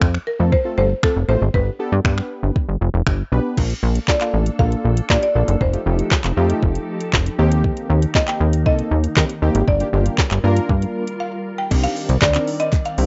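A straight 4/4 groove at 118 BPM drives this confident dance-pop excerpt in C dorian, where a soft-kicked, tape-warm R&B drum kit with woody snare and metallic hats sits up front beside a punchy, funky plucked bass that pumps under sidechain along with round, detuned, chorused keys, while a buzzing hard-mallet marimba with slapback echo carries the melody from 0.3 seconds, a glassy, ethereal FM pad enters in the background at 4.0 seconds, and a very quiet group handclap pops in at 12.2 seconds after a brief break, captured in a rough, dry home-demo mix.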